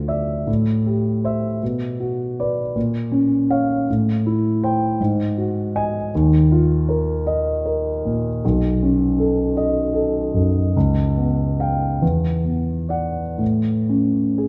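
A warm concert grand piano carries this short excerpt alone, sitting up front with a deep bass and an open character that spans from deep in the bass up into the upper middle register. The music is impressionist classical in style, moving in a lilting compound metre with a free, rubato feel that lets time stretch and breathe. Its mood is luminous and hazy, shaped by a drifting harmonic path that glides from Am7 through Bm and Bbm, then wanders to B9 and C#7#11 before settling on an Esus2 and finally A at 13.4 seconds. A moderate concert hall reverb surrounds the instrument, lending the chords a soft halo. Cut from a longer work, the fragment feels like a single suspended thought rather than a complete statement.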